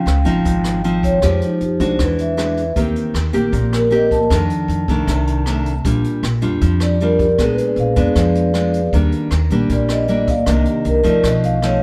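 Set back in the room under a moderate plate reverb, this relaxed, sunny bossa nova excerpt features a mellow, ringing vibraphone soloing with soft mallets, pausing between 4.5 and 6.8 seconds, over an up-front, full-bodied fingerpicked nylon-string guitar, a woody, thumpy pizzicato upright bass and a natural brush drum kit with a boomy kick, hi-hat and rim click, moving through lush extended chords such as Dbmaj9, Bb7b9 and B7#11.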